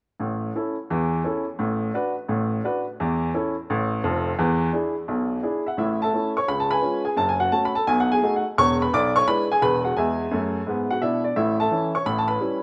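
A swung eighth-note feel in 4/4 drives this short stride piano passage, cut from a longer piece and full of playful, exuberant energy. A lone upright piano plays from 0.2 to 12.6 seconds, reaching from deep bass notes up into the high treble, with a clear, woody tone that sits up front. The opening phrase moves through A, Bm7 over A, A over E and E7. At 5.8 seconds a second phrase begins, running through C#7, F#m, B7 and E7 before settling back on A and turning to A7. Light reverb and a small room ambience give the instrument a natural presence, while the rough home demo mix keeps the sound casual and unpolished.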